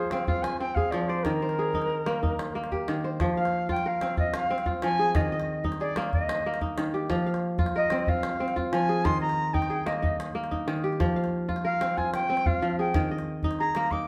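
A ringing, crisp kora and an airy, reedy jazz flute open this flowing, hypnotic West African string piece in F dorian at 123 BPM in a straight 12/8 with a small calabash, all played live together in a wet stone room, and the up-front flute, with its soft attack and vibrato, takes a solo from 3.2 seconds over chords moving between F5 and Eb5.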